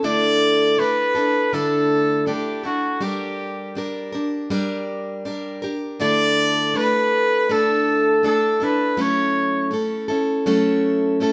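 Sunny and easy-going, this 81 BPM pop excerpt in D major sets a picked, plugged-in steel-string acoustic guitar with audible finger squeak beneath a clear solo trumpet melody with light vibrato that enters at 0.1 s and stops at 9.7 s, the pair playing live together in a reverberant stone room over chords moving from Dsus2 to Gm, back to Dsus2 and on to F#m7.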